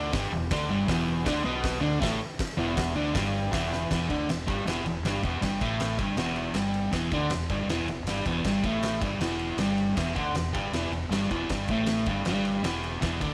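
A straight 4/4 pulse at 158 BPM drives this swaggering, menacing garage rock excerpt in E minor, where a crunchy, double-tracked overdriven guitar riff with spring reverb sits up front over a growling, bright fingered electric bass with overdrive and an oversized, low-tuned, gritty drum kit with a fat snare, boomy kick and dark cymbals in a pumping stone room, whose fill at 3.7 seconds leads into a new section at 3.9 seconds.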